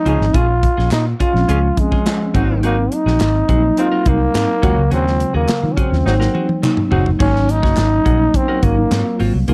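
Upbeat and breezy, this excerpt of polished 1980s jazz-funk pop features a raspy, growling trombone carrying the melody up front with vibrato, over a mellow tine electric piano treated with ensemble chorus and a round, foam-muted fingered bass. A smooth-topped horn section doubles in octaves on a second line until 7.1 s, while a clean, compressed electric guitar plays a riff with subtle chorus and distant, crisp handclaps enter at 0.9 s. A punchy modern drum kit with bright cymbals plays a fill from 6.1 s as the chords move from Bbm7 through Ebm11 to Ab7sus4 and Ab13, all captured in a dry, close studio sound.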